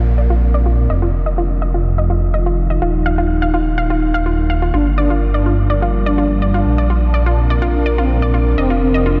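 Soaked in a huge, dreamy reverb that keeps the top end soft, this dark, driving melodic techno excerpt at 125 BPM in 4/4 moves through Bbadd9, F7, Ebsus2 and Gm7 as a deep, moody ambient pad and a warbling, vintage analog pluck arpeggio with sampler grit and analog delay both run under filter sweeps, a rumbling, detuned saw bass sits up front, a barely audible tape-toned electronic hi-hat plays beneath, a background downlifter is heard until 0.9 s, and a brassy, round synth brass melody enters at 4.7 s.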